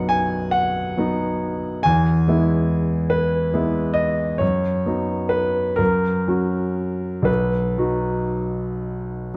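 A smooth, vintage-toned grand piano sits up front in this short fragment of a romantic classical nocturne, playing alone from 0.0 to 9.4 seconds across a range from B1 to G#5. The mood is yearning and mournful, carried by a slow 12/8 lilt that the pianist stretches and relaxes with rubato. The harmony moves from its home chord to a shift at 1.9 seconds, passes through a dominant-leaning stretch, and settles back home at 7.3 seconds. A moderate recital-hall reverb surrounds the piano, and the overall production leans dark and warm. The passage is cut from a longer piece, so it feels like a brief, intimate glimpse of something larger.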